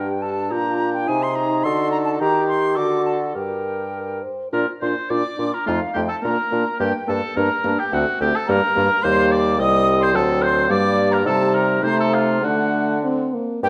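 In a dark production with a moderate recital-hall reverb, this urgent, dramatic excerpt from a quick classical-period wind quintet movement in 2/4 with a rubato feel sets a pure, vibrato-tinged silver concert flute on the melody above a distant, roomy oboe second line, a present French horn and a vintage-toned clarinet in the background as accompaniment, and a mellow, smooth-topped bassoon up front on the bass, with the harmony moving into a new section at 4.5 s.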